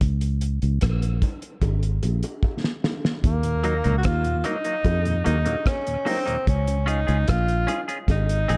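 A dark, lightly reverberant studio sound frames this hypnotic, spacious dub reggae excerpt at 74 BPM in Eb dorian. It opens on a break where a dry, cloth-damped drum kit with a fat snare and tight kick sits up front beside a round, foam-muted fingered electric bass, with distant, high-tuned bongos joining at 1.2 seconds through dub echo and a drum fill rounding off the break. From 3.3 seconds a breathy, whispered tenor saxophone takes an intimate solo with vibrato and scooped notes through dub echo. A mellow, lightly overdriven tonewheel organ with key click and slow rotary speaker joins in the background at 3.4 seconds, and a clean, hollow-body semi-hollow electric guitar adds echoed accompaniment from 3.6 seconds. A filter sweep arrives as the chords move from Ebm to Db.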